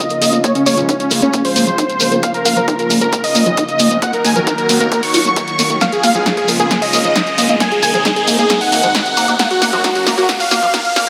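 This bittersweet, driving uplifting trance excerpt opens straight into a build-up, with a huge, airy supersaw carrying the melody up front as a low-pass filter sweeps across it, pumping against the beat and trailed by digital delay. Beneath it, a very quiet unison pluck traces a second line, a lush, warbling vintage pad holds slow-attack chords with chorus, and a squelchy, resonant acid bass spins arpeggios through a phaser, tape coloring and its own filter sweep. A grainy, close and dry shekere sits in the background, and a punchy analog drum machine with tape-warm hi-hat and snare arrives almost at once, joined by a very quiet, fat, nasal bass and a heavy, layered electronic kick kept in the background. An electronic riser enters at 2.0 seconds and sits in the background, while a drum fill from 5.8 seconds heightens the tension. A moderate, lush hall reverb surrounds the parts, and the supersaw itself sounds dense and compressed.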